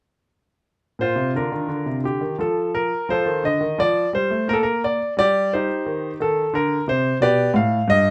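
Heard up close in light reverb, a clear, intimate grand piano with audible action noise and long sustain plays a radiant, dance-like baroque-style suite movement alone in a rubato triple metre, moving from Bb through F7 to Cm and G across a short cut from a longer piece that runs from 1.0 to 8.1 seconds.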